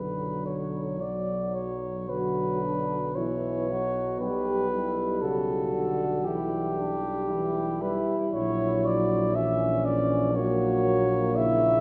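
A dark, close-miked solo cornet carries the melody up front in this solemn, melancholic hymn-like brass band excerpt in B minor, moving with a rubato feel at around 54-62 BPM in 4/4. Behind it, a dark, tight trombone section and a roomy solo trombone with light vibrato sit distant in the background, and a distant, warm tuba holds the bass, while a mellow French horn section with soft attack and a vintage tone joins on a second line at 2.1 seconds. The harmony moves from Bm through C#m7b5/B to F#7/A#, all bathed in wet concert hall reverb heard from further back in the room.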